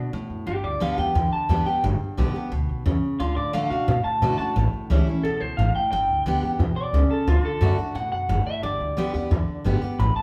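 A live-in-one-room sound carries this short rockabilly clip, with a moderate large-studio reverb giving the trio some air around it. At a brisk 176 BPM in a straight 4/4, the mood is rollicking and retro, the chords moving through G, D and A. Out front, the electric guitar carries the melody through a small old amp, its bright, twangy tone slightly broken-up and lo-fi. A picked steel-string acoustic guitar supplies full-bodied dreadnought accompaniment, while the upright bass, entering at 0.1 seconds, gives a woody, thumpy pizzicato pulse from its gut strings. All three instruments sit up close in the mix, and the bass is the most prominent of them.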